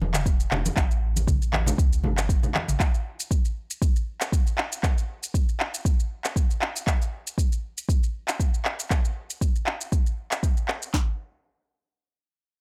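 A dry, close-sounding fragment of earthy, hypnotic afro house at 118 BPM in 4/4, with a light swing on the sixteenths. A round, dark sine sub bass with sidechain pumping and low-tuned, ringing, saturated congas played with soft hands open the piece, with the bass stopping at 2.8 seconds. Two up-front electronic drum kits in studio reverb enter moments later: one holds handclaps, shaker and toms, and the other a deep kick, a sharp snare and handclaps, running until 11.1 seconds.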